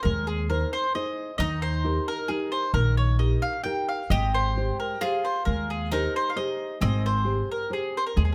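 This Italian folk serenade in 3/4 feels romantic and lively, with a loose, rubato sway across its 8.3 seconds, cut from a longer piece. A bright, woody mandolin carries the melody up front, its picked double strings given a touch of slapback echo. Beneath it, a bowl-back mandolin adds a softer second line in a lower register, also picked on doubled strings. A full-bodied nylon-string guitar supplies fingerpicked accompaniment with a deep classical tone and audible finger squeak. The upright bass sits forward in the mix, played pizzicato on steel strings with a thumpy, warm and woody weight. Close, detailed miking and light reverb frame the harmony as it moves from Ab to Eb at 1.4 seconds and settles on Abmaj7 at 4.1 seconds.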